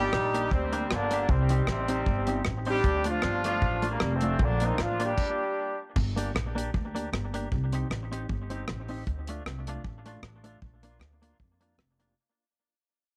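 Ska in G minor at 154 BPM with a lightly swung, mischievous and energetic feel, this fragment of a longer piece opens with a punchy, vibrato-laden horn section playing the melody in octave doubling over a Gm–Cm–Dm–Bb progression. Beneath the horns, a clean, compressed semi-hollow electric guitar colored by tube saturation, harmonic tremolo and tape echo provides accompaniment. A woody, thumpy gut-string upright bass and a dry, deep reggae drum kit with a tight kick, hi-hat, rim click and crash cymbal drive the groove in a small, lightly reverberant room. The band breaks for a stop at 5.2 seconds, the horns fall silent at 5.8 seconds, and from 6.0 seconds the guitar, bass and drums repeat the progression as the recording fades out.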